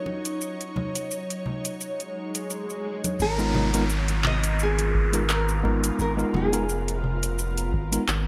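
Wistful and warm, this sunset chillout excerpt moves at 86 BPM in 4/4 with a lightly swung sixteenth feel, set in G# dorian. A worn, slightly out-of-tune tine electric piano with gentle overdrive opens on a D#m7 chord alongside an ethereal, airy pad whose detuned sawtooth and triangle layers shimmer through ensemble chorus, phaser and built-in reverb, while ringing, soft-handed congas and an up-front deep house kit of metallic hats, handclaps and shaker fill in the rhythm. An electronic swell rises from 2.1 seconds, and at 3.2 seconds the harmony shifts to G#m69 as several parts arrive together: a fingerpicked classical nylon-string guitar carrying the melody through lush chorus and digital delay, a round, dark analog bass sitting up front, and a dry, tape-warmed kick drum tucked in the background. A downlifter rounds out the effects as the passage draws toward its close. The whole sits in light digital ambience with a bright, 1980s-style sheen.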